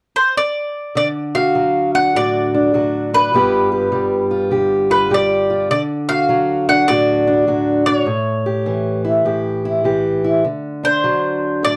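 Acoustic country blues with a rollicking, soulful swing, this short cut from a longer piece opens with a mellow, round mandolin carrying the melody up front, its doubled strings touched by plate reverb. At 1.0 seconds a boxy, fresh-stringed fingerpicked archtop guitar joins beneath it, moving through D, G7 and A7 before a turn to D7 at 10.4 seconds. The dark production sits in a snug, ambient booth.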